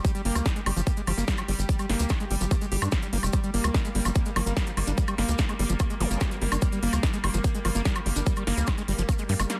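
Psychedelic trance at 146 BPM in G phrygian, alien and intense, with an up-front overdriven kick and punchy techno kit of hi-hat, snare and woodblock alongside a tight, driving sawtooth sequencer bass, while a squelchy, gritty acid bass riff with tape echo and a pulsing, tempo-synced gated chord texture with chorus pump together, grainy, mellow maracas join in, and a very quiet downlifter, zap and swell mark 0.0, 6.0 and 9.3 seconds in this dense, heavily limited fragment.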